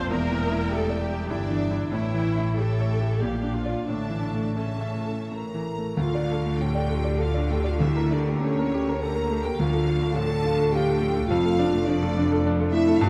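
Classical romantic movement for piano and orchestra in a passionate, tragic, rubato 3/4, where a brilliant, up-front grand piano carries the melody alongside two clear, vibrato-laden violin sections on melody and second line, while expressive violas with portamento, mellow French horns holding sustained chords and intense cellos sit in the background, dark, woody double basses anchor the low end from a distance, soft-mallet timpani barely surface between 7.8 and 8.7 seconds, and concert hall reverb frames this fragment cut from a longer piece.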